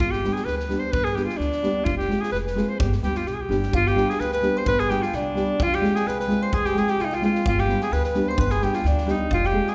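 A bright alto saxophone opens this short cut from a longer Balkan wedding-band tune, carrying the melody up front with vibrato and a smooth, classical-style top, while pizzicato upright bass and a natural acoustic drum kit of tight kick and medium-tuned snare enter with it. A dark, thumb-plucked nylon-string guitar joins at 0.2 seconds with a deep classical accompaniment, its finger squeaks audible. The feel is bittersweet yet fiery, moving at 129 BPM in a straight 2/4 over a shifting harmony of G and F minor, with the bass adding a woody, steel-strung bite beneath. At 3.7 seconds the section repeats and a kalimba adds a second line high above, its close-miked, dry thumbnail plucks ringing with a hollow, boxy tone. The whole band sits in a resonant recital-hall space with a reverb of about 1.5 seconds, lending the folk dance a churchly glow.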